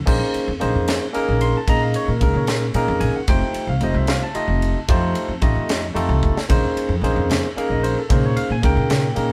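A band playing live in one room, with moderate studio reverb, delivers this slick, nocturnal slice of electric jazz fusion in Bb dorian at 75 BPM in a straight 6/8. A barky, clean tine electric piano through a combo amp sits up front beside a crisp, airy, polished drum kit with a high-tuned snare and tight kick, while a woody, growly pizzicato upright bass anchors the Bbm11 to F9 movement. A drum fill at 6.2 seconds leads into the return of Bbm11, where bright, compressed, saturated congas join in the background from 6.5 seconds.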